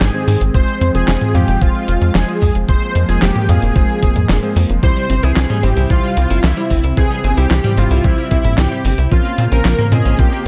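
Synthwave with a nocturnal, driving mood and a straight feel, cut from a longer piece and set in a dark ambience. A thick, bold sawtooth lead carries the melody with detuned unison, vibrato and ensemble chorus and digital delay, while a soft, airy lead sings a dreamy second line above it, in the background with chorus and delay of its own. Underneath, a smooth, mellow analog pad holds sustained chords with a slow attack and sidechain pumping, and an electric grand piano with a vintage, clangy low end adds delayed stabs. A tight, punchy sequencer bass sits up front with a plucky, wave-folded tone and pumps in time alongside a clean 12-bit drum machine playing handclaps, hi-hat, a fat snare and toms, joined from 0.5 seconds by a thumpy electronic kick. At 4.8 seconds a clean, picked electric guitar enters in the background with scooped arpeggios, harmonic tremolo and delay as the harmony moves from Ab and Fm to C and on to Bbmadd9.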